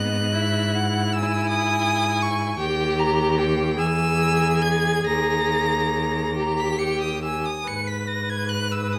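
A clear, focused first violin carries the melody high above the ensemble, sung close and with vibrato, while a second violin of rich, even tone traces a distant second line beneath it. The viola supplies a smooth-topped accompaniment and a bowed cello holds the bass up front, the four single players sounding together throughout this elegiac, melancholic fragment of a slow romantic string quartet movement. In a rubato 6/8 at about 44-55 BPM counted in dotted quarters, the harmony passes from Emaj9/G# through D# and D#sus4 before settling on G#m, framed by a light reverb.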